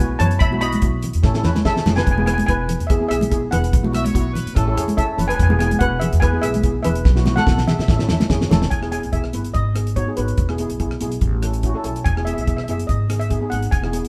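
A festive, bouncy calypso excerpt opens with two steel pans and an upright bass. A shimmering lead pan played with medium rubber sticks carries the melody, while a mellow, soft, band-limited double-seconds pan with a vintage tone supplies accompaniment beneath it, and the pizzicato bass gives a woody foundation from its steel strings, all in a lightly swung sixteenth-note feel. A dry, cloth-damped drum kit sits up front with a fat snare, tight kick, rim clicks and hi-hat, its rolled-off top keeping it dark and thuddy, and it plays a fill almost at once. High-tuned congas with a thin, damped skin sit in the background until about 8.6 seconds. Near 3.9 seconds a clear, punchy horn section appears briefly with a light vibrato and smooth top, and the harmony moves from suspended and major chords toward minor-seventh colour as a second section begins around 8.7 seconds. The band plays live together in a moderate stone room that adds a reverberant ring.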